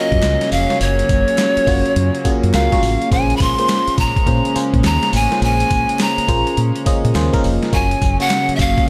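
Light, digital ambience surrounds this punchy, bouncy stretch of new jack swing R&B at 104 BPM in Bb minor, with swung sixteenths and chords moving from Gbmaj7 to Bbm9 and back to Gbmaj7 at 7.7 seconds. A breathy, reedy bamboo pan flute carries the melody close and up front with vibrato and chiff, over a glassy, bell-like FM electric piano treated with chorus and phaser, soft bowed strings floating at a distance, and a dark, round fingered electric bass. A gritty, pitched-down sampler-style drum kit with a thumpy kick, high-tuned snare, hi-hat, tambourine and gated reverb sits under it all, while a crisp group handclap stays very quiet in the background.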